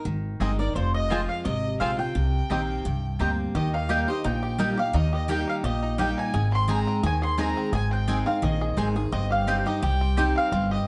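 Rustic and lonesome, this bluegrass excerpt swings lightly at 172 BPM in 4/4, with a full-bodied, up-front picked steel-string guitar and a thumpy, woody upright bass on gut strings laying the foundation from the start, while a twangy fingerpicked banjo and a double-strung mandolin carry the melody with plate reverb, a clear, focused fiddle with light vibrato adds a second line, and a second, bright mandolin plays stabs with slapback echo, all in a dark, warm production moving from Abadd9 and Fm toward Eb, Ab and Cm/G as the music shifts into a new section at 3.5 seconds.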